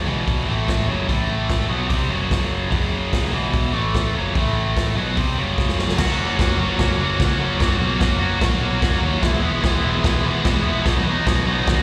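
A biting, bright overdriven guitar riff with slapback echo, double-tracked and up front, opens this swaggering, raw garage rock clip at 147 BPM in straight 4/4, tuned to A4 = 438 Hz, alongside a growly, punchy picked electric bass with tube saturation. An acoustic vintage drum kit with dark cymbals, a medium-tuned snare and a punchy kick joins at 0.3 seconds, and a drum fill at 5.6 seconds leads into a new section at 6.0 seconds built on F#, E and B chords. It all sounds like a live gig heard through the venue's PA, with small-room ambience and recital-hall reverb, cut from a longer piece.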